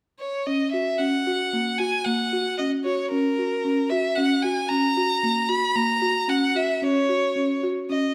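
A rich, bowed solo violin with vibrato opens the melody at 0.2 s, joined at 0.5 s by woody, buzzing marimba arpeggios on a rootless Ebm7 in this restless, hypnotic contemporary chamber piece in 7/8 at 226 BPM in Eb phrygian, tuned to A4 = 437 Hz, both parts up front in a moderate scoring-stage reverb in a short cut from a longer work.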